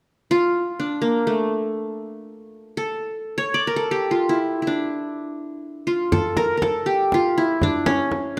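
In free time, this hypnotic, soulful excerpt of Arabic maqam ensemble music in D maqam nahawand, tuned to A4 = 442 Hz, features an up-front, bright-edged qanun carrying the melody between A3 and D5 from 0.3 s, joined at 6.1 s by a deep, large frame drum played with soft hands, close and dry, all set in a moderate recital hall reverb.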